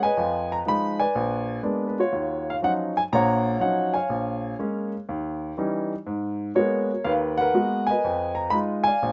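Lightly reverberant and intimate, this brief cut from a longer solo jazz piece puts a clear, woody upright piano up front, with audible action noise and long sustain. The smoky, cool mood rides a swung 4/4 feel as the piano spans a range from deep bass to high treble over minor ii–V changes, moving from Fm7b5 and Bb7b9 to Ebm9, then through Bbm7 and Eb7b9 to Abm9 before returning to Fm7b5 at 8.0 seconds. The polished playing fills the whole 9.1 seconds.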